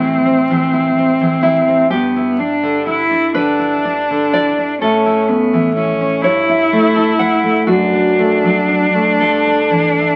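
Serene and warm, this romantic duo for cello and classical guitar moves in an unhurried 6/8 at 42 BPM, counted in dotted quarters, with a freely rubato feel. A single bowed cello carries the melody up front, its smooth, even tone shaded with vibrato within a narrow range from B3 to E4. The nylon-string guitar, fingerpicked and full-bodied with a deep classical resonance, supplies the accompaniment across a span from F#2 to F#5, sitting at the same level as the cello. The harmony drifts from Am through Em7/G to a brightening A at 4.8 seconds, then A7/G and D/F# before settling back on Em7/G. Light reverb and the crackle of a very old 78 rpm record lend the short passage, cut from a longer piece, a faded, nostalgic glow.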